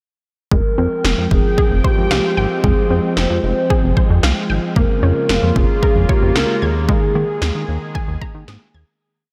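A hollow, woody clarinet-like synth lead carries a soft, hook-driven melody with vibrato and chorus, drifting through diffuse delay and shimmer reverb in this nocturnal, melancholic synth-pop piece. Beneath it, a sweeping resonant pad holds evolving chords, a detuned unison pluck traces rising eighth-note arpeggios in the background, a glossy chorused synth bass runs a sequenced line up front, and 80s electronic pad drums keep a straight drum-machine beat with a punchy kick and gated snare. The dreamy mix is soaked in cathedral reverb and fades out from 6.9 seconds to its close at 9.0 seconds.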